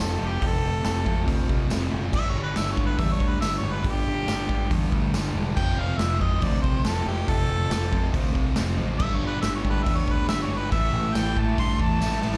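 A warm, smooth-topped harmonica carries the melody from the first second in this rowdy, swaggering garage rock excerpt at 140 BPM in a straight 4/4, its tone overdriven and touched with slapback echo. Beneath it, a double-tracked fuzz guitar grinds out a compressed, picked riff up front, also given slapback echo, while a growling fingered electric bass adds overdriven low end thickened by tube saturation. The raw garage drum kit comes in at 0.4 seconds, its punchy kick, medium-tuned snare, hi-hat and crash sounding gritty and saturated in a pumping stone room with a rolled-off top. A jingly vintage tambourine sits in the background, and the chords move from F to G5, back to F and up to G5 again before landing on A5 near the close. A drum fill at 12.0 seconds ends the passage, which sounds like a live gig heard through the venue's PA with club reverb.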